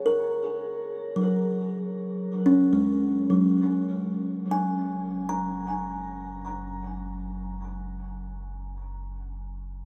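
Spacious and melancholic, this ambient excerpt in straight 4/4 opens with woody, hollow kalimba arpeggios up front, trailing a diffuse ambient delay and ringing into a huge wet reverb over an F#add9 chord, before a deep, round, wave-folded analog bass enters low in the mix at 4.5 seconds and sustains until 9.8 seconds, outlasting the kalimba, which stops at 8.5 seconds.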